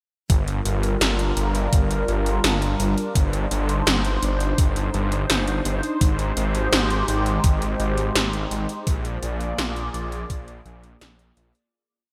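From 0.3 seconds a short, complete synthwave piece at 84 BPM in G phrygian opens all at once, cinematic and nostalgic, with a swirling, nasal analog pad sustaining chords through phaser, chorus and sidechain pumping, a thick, detuned saw bass driving eighth notes up front, an 80s machine backbeat of gated snare and metallic closed hats, and a thumpy electronic kick, re-recorded in a large room, that plays until 10.4 seconds, all under light reverb and bright 1980s-style digital production as the chords move from Gm7 to Bb7 and a fade-out begins at 7.9 seconds.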